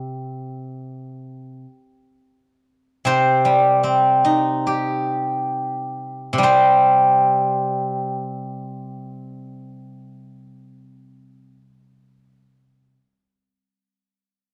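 Chinese traditional solo plucked-string music unfolds here in a contemplative, elegant mood, drifting freely in rubato at roughly 33-48 BPM in 4/4 and centred in the C yu mode. A steel-string zither, played with fingerpicks, carries the whole piece alone from 0.0 to 13.0 seconds, its silvery, ringing tone spanning C3 to C5. The instrument sits up front with an acoustic warmth, coloured by cassette tape. The opening passage slows as it unfolds through its first 6.4 seconds before a second section takes over until the close of this fragment cut from a longer piece. Small room ambience frames the sound, giving it the intimate feel of a home recording on cassette.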